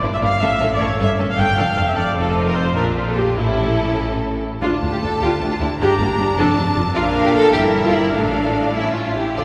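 An up-front, lush viola section carries the accompaniment through this dramatic, restless passage from a quick classical-period movement for string orchestra in a rubato 6/8, as a violin section with a smooth top sings the expressive, vibrato-rich melody, a second violin section adds a second line with portamento, a bright, focused cello section and a distant double bass section hold down the bass, and a long church reverb surrounds the ensemble.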